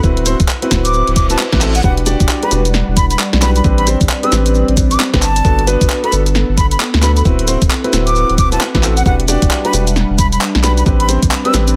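A swung, bouncy two-step garage groove of overdriven knocking kick, cracking snare, handclaps, hi-hat and shaker in a small room sits under a thick, saturated sub bass up front, intimate grand piano stabs with dub echo and a very quiet silky string machine holding sustained chords, while an airy, close-miked concert flute with vibrato carries the late-night melody from 0.8 seconds, a reverse cymbal sweeps in at 1.1 seconds, and a warbling, lo-fi tape-like pad with chorus and sidechain pumping drifts in the background from 2.4 seconds.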